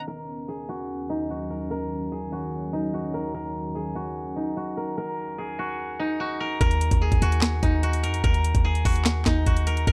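A fingerpicked steel-string zither carries the melody from the start of this dark, brooding trap excerpt, its silvery, ringing tone sitting up front through a low-pass filter. Beneath it, a deep, warbling ambient pad holds sustained Eb minor-seventh chords, its detuned sawtooth layers and sub octave softened by chorus and reverb, until it drops away at 6.6 seconds. A filter sweep runs across this opening stretch before the track settles on a plain Eb minor chord. At that point a boomy 808-style bass enters with a fast attack and mellow decay, alongside an electronic trap kit with a knocking kick, sharp snare, handclaps and bright hi-hats, all riding a half-time feel at 147 BPM. The whole mix sits in light digital ambience under a low-pass filter, and the clip is cut from a longer piece.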